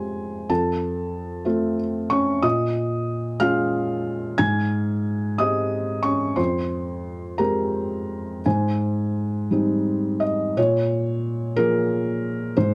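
Neoclassical minimalist piano in a rubato 6/8 at about 56-62 BPM, this peaceful, tender excerpt features a solo felt-muted upright piano that sounds mellow, dark and intimate, with audible action noise and a vintage, up-front presence, moving through F, Bbm7, Abmaj7 and Fmadd9 in light reverb and a warm production before turning to a new section at 10.6 seconds.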